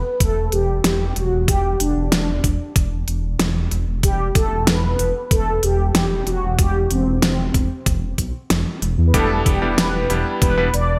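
Synthwave with a nocturnal, cinematic mood, this brief excerpt from a longer piece sets a round, brassy synth lead, colored with chorus, tape echo and vibrato, over a deep, rumbling detuned saw bass that beats and sustains underneath. An electronic kick with a thumpy, small-room character drives a straight 4/4 alongside a layered pop kit of fat snare and crisp hi-hats bathed in gated reverb. At 9.1 s, as the harmony settles onto Em7, a clear, clangy electric grand piano adds short stabs up front, all within a light digital ambience.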